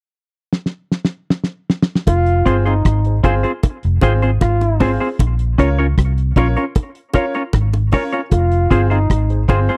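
A cloth-damped, thuddy drum kit opens this hypnotic, laid-back roots reggae excerpt with a fill at 0.5 seconds, its fat snare and tight kick sounding dark and up front at 77 BPM in F minor. At 2.1 seconds a round, foam-muted fingered bass, high-tuned bongos and a distant, roomy trombone with light vibrato and tape echo join as the chords move from Fm to Bbm and back. From 2.5 seconds a clean, compressed semi-hollow guitar with tape echo and a woody upright piano playing stabs, its action noise audible, fill out the dry, close 1970s-style sound.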